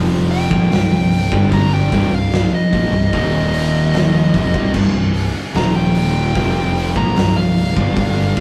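Stoner and doom metal at a slow 74 BPM in 4/4, this heavy, brooding excerpt in C minor sits on a riff carried by two dark, picked fuzz guitars and a brighter, double-tracked overdriven electric guitar, all three kept very quiet in the mix. A fuzz fingered electric bass with overdrive, bright and direct from the amp, holds down the low end from the start. At 0.3 seconds an oversized low-tuned drum kit arrives up front, its fat snare, punchy kick, crash and hi-hat sounding saturated and gritty in a bright stone room. Entering alongside the drums, a compressed fuzz lead guitar solos through the rest of the passage with distortion and tape echo. From 1.1 seconds a metallic, inharmonic drone holds eerie, slow-attacking chords with chorus beneath everything, very faint, as the harmony moves between C and Eb. The rough rehearsal-room recording carries tube saturation and a light reverb.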